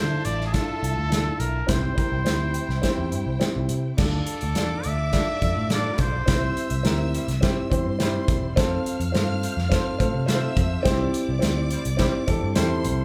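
A clear, pop-style solo trumpet with vibrato carries the melody of this uplifting 1960s-style soul cut until 7.1 seconds. A lush, expressive bowed violin section, a woody upright piano with audible action noise and a brief fill just before the 4-second mark, a round, foam-muted picked electric bass and an up-front acoustic drum kit with dark cymbals and a punchy kick drive it along in a straight four. A tight, mellow jazz-style horn section slips in behind the band at 4.9 seconds, all of it captured as a live performance in one room with a moderate large-studio reverb.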